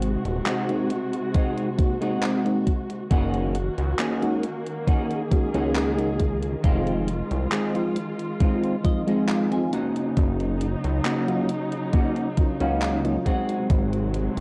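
This hazy, nostalgic vaporwave excerpt opens with dark, lush bowed strings holding sustained chords, a glossy chorused synth bass up front, gated 80s drum-machine handclaps and hi-hat, and a clean, picked electric guitar riff roughened by 12-bit sampler grit, ensemble chorus and analog delay. A mellow, round FM electric piano joins at 0.7 s with lush chorus and delay, a thumpy, up-front electronic kick follows shortly after, and the guitar breaks into a fill from 8.4 to 10.2 s. The sound is dry and gritty, like a hardware recording dubbed to cassette tape, over chords that move from Ab7 through Fm7 and back to Ab7.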